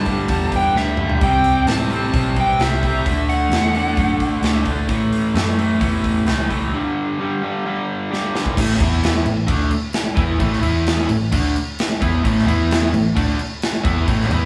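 A crunchy, double-tracked overdriven rhythm guitar drives this raunchy, swaggering blues-rock and southern-rock excerpt at 131 BPM, backed by a dark, foam-muted picked bass and a punchy, bright-cymbaled rock kit with fills, while a smooth overdriven lead guitar and a very quiet second lead line appear only until 4.6 seconds, all set in small-room live ambience with moderate reverb, moving from G5, C and D chords through a break into a riff alternating A5 and E5 from 8.6 seconds.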